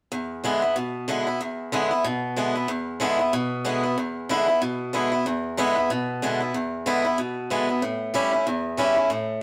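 Swung eighth notes drive this upbeat, rowdy rock excerpt at 187 BPM in E mixolydian, where a lone picked acoustic guitar sits up front with a bright, boxy tone, fresh strings and audible finger squeak, moving into a new section at 2.7 seconds and shifting from E7 to A7 at 7.8 seconds, all captured as a rough rehearsal-room recording in a moderate stone-room reverb.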